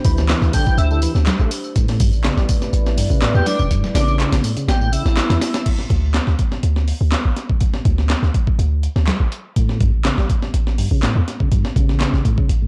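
A dark, detuned pad, a deep, boomy 808-style bass and a punchy drum machine of handclaps, hi-hat and tambourine open this funky, raw breakbeat excerpt, joined almost at once by a gritty, compressed sampler-style breakbeat kit with thumpy kick, a lightly overdriven percussive tonewheel organ riff through chorus vibrato, and an airy, dreamy lead with phaser, AM radio sound and analog delay, before pad and lead stop at 5.6 seconds and the organ returns at 9.6 seconds over a dry, cassette-tinged hardware sound.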